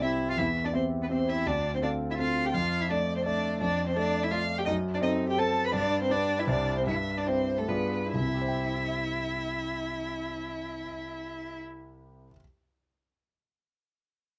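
A bowed solo violin carries the melody in this quick, graceful and spirited classical-period movement for piano trio, its smooth, even tone shaped by vibrato and set distant yet still up front. Beneath it a single cello sings a second line with soft attacks, expressive portamento and its own vibrato, and both strings share a rich, bowed character. The concert grand piano supplies the accompaniment with a clear, polished and intimate sound: deep bass, long sustain and audible action noise sit close and present in the mix. In 3/4 at roughly 131-170 BPM in C major, the harmony moves through chords such as Dm7, F#dim and G7b9 before landing on C as a new section opens at 8.1 seconds. The tempo slows from 5.2 seconds into that arrival. The violin and cello stop at 11.6 seconds, leaving the piano to ring on briefly in a lightly reverberant, closely and finely captured room, as this passage, cut from a longer piece, comes to a close.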